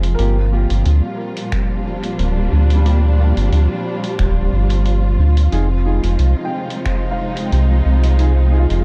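Spacious and hazy, this ambient dub fragment moves at 90 BPM in 4/4 with a light swing on the sixteenths, cut from a longer piece. A round, deep analog bass sits up front throughout, while a dark, lush symphonic string section holds sustained chords that shift from Gm7 to Fm7 at 5.5 seconds. In the background, a felt-muted upright piano plays soft, boxy arpeggios with audible action noise and dub echo, and a clean, fingered electric guitar adds mellow stabs, also echoed, from 0.2 seconds. A breathy, wind-like tuned noise texture drifts behind them in its own built-in reverb. Muffled, compressed sampler-style finger snaps and hi-hat trail dub echo, joined by a dry, tape-warm electronic kick drum between 1.5 and 7.0 seconds. The production is dark and close, with little reverb.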